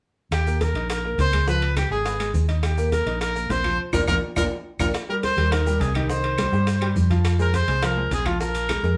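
Played by a band live in one room with a wet studio reverb, this festive, danceable salsa excerpt moves at 208 BPM in Eb major. A clear, punchy trumpet with light vibrato carries the melody up front over a dark, round hollow-body electric bass, while a bright, slightly detuned upright piano with audible action noise joins at 0.5 seconds. Low-tuned congas, tight high-tuned bongos, ringing metal-shell timbales, woody claves and grainy maracas fill out the percussion, and a drum fill with a band accent from 3.8 to 4.9 seconds leads into the second section.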